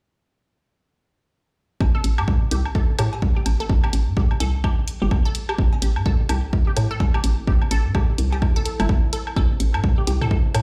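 A punchy, tape-warm kick drum sits up front in this clinical, hypnotic minimal techno excerpt with swung sixteenths, entering at 1.8 seconds together with a hollow, bouncy FM bass pumping against it and layered electronic cowbell, woodblock and toms trailing dub echo, followed at 1.9 seconds by a squelchy, resonant blip pluck riff coloured by phaser and tape echo and at 2.0 seconds by an analog hi-hat, while a deep, dark pad with chorus and its own reverb enters at 4.9 seconds, fading in in the background over an Am7 chord, all heard as if played on a big sound system in a bare room with large studio reverb.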